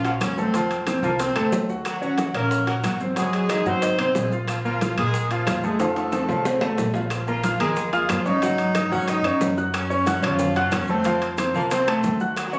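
Driving and fiery, this salsa fragment from a longer piece charges along at 183 BPM in 4/4 with a straight feel, centred on Bb minor. A punchy, tight horn section carries the melody in octave doubling, its lines tagged by a slapback echo, while an up-front grand piano, intimate and polished, supplies the accompaniment with its action noise clearly audible. Underneath, a thumpy pizzicato upright bass on steel strings anchors the low end. The percussion sits mostly in the background: ringing metal-shell timbales, medium-tuned congas played with soft hands, woody claves, grainy maracas and very quiet, high-tuned bongos struck with hard hands. A drum fill from 5.8 to 7.1 seconds marks the return of the opening section, whose harmony moves through rich chords such as Gbmaj7#11, F7b9 and Gbmmaj7. The sound has the feel of a phone recording in the room, with club reverb and compression lending a live ambience.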